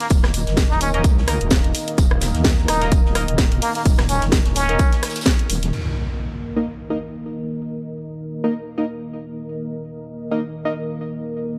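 Bouncy and swaggering, this bass house passage pairs a clear, wah-wah plunger-muted trumpet melody with a punchy overdriven electronic kick, a cracking house kit, a faint acoustic indie kit with tambourine, a heavy saturated wobble bass, a nasal band-passed chord stab and a deep, moody pad, until the trumpet stops at 4.9 s and, as the drums and bass fall away around 5.7 s, an electronic impact hits and a filter sweep runs over the stab as the pad sustains to 11.6 s.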